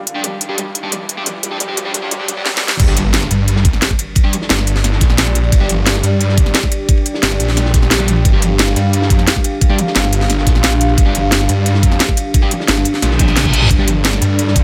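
Dark technical drum and bass at 176 BPM in G minor, tense and aggressive, where a brief build-up with a moody detuned analog pad, a felt-muted upright piano arpeggio with audible action noise, thick double-tracked fuzz guitar stabs, a background riser and a crisp, cracking up-front drum kit drops at 2.8 seconds into a snarling, growling distorted saw bass, a knocking electronic kick and a very quiet, gritty breakbeat kit with dark cymbals, capped by a reverse cymbal and drum fill at 13.2 seconds.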